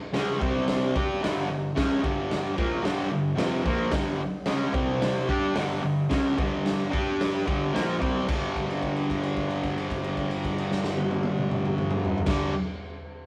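A rough rehearsal-room recording with warm saturation and moderate reverb frames this swaggering, raw garage rock cut at 111 BPM in straight 4/4, tuned to A4 = 436 Hz, where a bright, picked, double-tracked fuzz guitar riff, compressed and pushed up front over C5 and G5 chords, rides alongside an up-front, punchy acoustic drum kit with a medium-tuned snare, dark rolled-off top and crash, hi-hat and toms, both playing from the start until a held note from 8.3 s carries the closing section.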